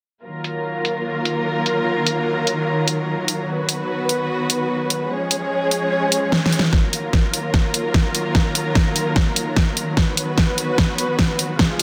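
A dark symphonic string section opens this chaotic, menacing stretch of heavy wobble dubstep. The bowed ensemble sits up front with a woody, lush tone, soft attacks, vibrato and a smooth top, holding sustained chords through sidechain pumping and a low-pass filter. A layered electronic drum kit enters at 0.4 seconds in a half-time feel, its huge snare and bright hats both low-pass filtered and given a tape-warm character while a filter sweep runs over the drums. A drum fill leads into the second section at 6.7 seconds, where a knocking electronic kick joins and a build-up carries the passage to its cut-off point. A moderate hall reverb surrounds the parts, and the dense, heavily limited modern master keeps the whole piece pressing forward.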